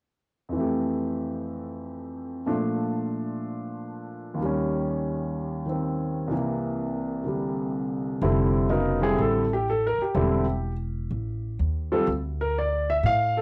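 Swung eighth notes in 4/4 give this playful jazz piano trio fragment, cut from a longer piece, its bouncing lilt, as an intimate grand piano with audible action noise and long sustain carries the melody alone through changes such as Fmaj9 and Eb7, its tone colored by cassette tape. At 8.2 seconds a woody, growly pizzicato upright bass on steel strings joins up front beneath it, moving through Em7 toward Dm. The whole take has the homey feel of a cassette recording in a small, wet room.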